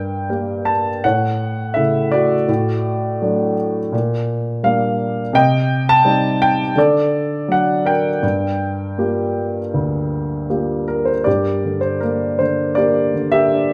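Melancholic and dark, this brief classical passage for solo piano sits in G minor and moves in a lyrical, rubato 4/4 at roughly 77-86 BPM. A grand piano carries the whole piece alone from 0.0 to 13.7 seconds, ranging from D2 up to A5 with a mellow, dusky tone and long sustain, placed up front in the sound. The harmony moves from Gm through A, D/A, Gm/Bb, Cm and D before settling on Gm7 at 8.2 seconds. A new section begins at 11.3 seconds, returning to Gm as the phrase continues. Light reverb surrounds the instrument, and the passage is cut from a longer piece.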